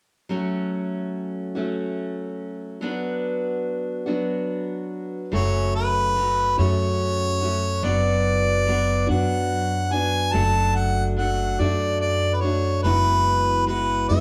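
Haunting and reflective, this excerpt of slow acoustic folk in F# minor moves at 48 BPM in a straight 6/8, opening with an up-front picked steel-string guitar, complete with finger squeak, alone until 5.3 seconds, when a clear, classical-style harmonica solo with plate reverb takes the melody and a woody, growly pizzicato upright bass enters beneath it, all heard from further back in a reverberant studio room as the chords move from F#m through Bm/F# and D/F# to Eadd9/F#.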